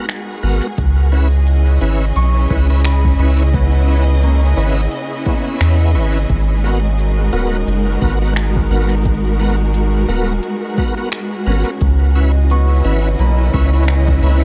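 A swung sixteenth-note groove of finger snaps and crisp hi-hat, trailed by dub echo, rides over a round, up-front sub bass and an overdriven electronic kick set in the background, while a lush bowed string section holds sustained chords and a bright, shouting tonewheel organ stabs through overdrive, chorus vibrato and a slow rotary speaker, joined at 2.2 seconds by a ringing, fingerpicked concert harp playing arpeggios through a low-pass filter sweep and analog delay, in a deep, spacious ambient dub mix heavy with echo.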